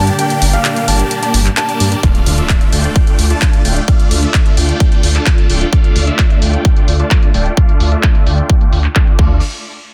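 Festival progressive house with an anthemic, emotional pull opens on a pumping bed of veiled, muted strings and worn piano arpeggios through tape echo, while a huge, euphoric supersaw riff with phaser and a thick, menacing detuned saw bass carry over the overdriven big-room drum kit's claps, hats and crash. At 2.0 s the strings and piano stop, a punchy, up-front overdriven kick arrives with a background impact, and filter sweeps run across both the supersaw and the bass. The dry, dense, heavily limited mix moves from G minor to D minor in this short cut from a longer track.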